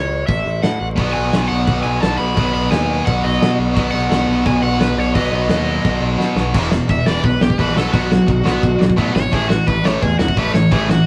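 A straight 4/4 pulse at 173 BPM drives this energetic, upbeat punk rock cut, which opens in half time as a growly, direct picked electric bass and a muffled, lo-fi indie drum kit with a punchy kick and dark cymbals back a bright, overdriven cranked stack guitar melody, a double-tracked distorted guitar riff pushes up front from 1.0 seconds, and a drum fill at 6.2 seconds launches an overdriven electric guitar solo at 6.5 seconds, all captured as a band playing live in one room with moderate reverb and a layer of vinyl crackle.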